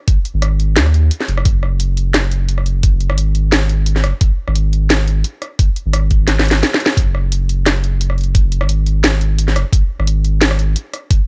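A half-time groove at 174 BPM in 4/4 drives this short, dark, cinematic cut from a longer drum and bass piece, its sixteenths carrying a slight swing. An electronic kick with a knocking, layered punch sits up front beside a produced drum kit of cracking snare, rim clicks and bright hi-hats, both re-recorded in a small room. A saturated sub bass fills the low end with a deep, thick sine tone, sustained notes ranging from F#1 to D#2 with a fast attack. At 6.3 seconds a drum fill breaks the pattern, and the kick drops out from 6.6 to 7.0 seconds before the groove resumes. The sound is dry and gritty, with little reverb and tuning set slightly below standard pitch at A4 = 438 Hz.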